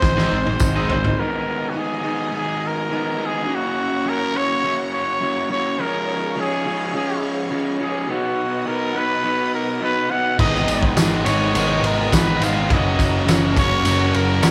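Indie rock at 104 BPM, upbeat yet wistful, cut from a longer piece: after an opening drum fill from a loose, fat-snared kit, a raspy, growling trumpet carries the melody over a bright crunchy overdriven guitar riff and sustained vintage sawtooth string-machine violas with ensemble chorus, while a second guitar, picked electric bass, drums and a jingly tambourine drop out and return at 10.4 seconds, all played live in one room with a large studio reverb over chords moving through G#madd9, F#, C# and B.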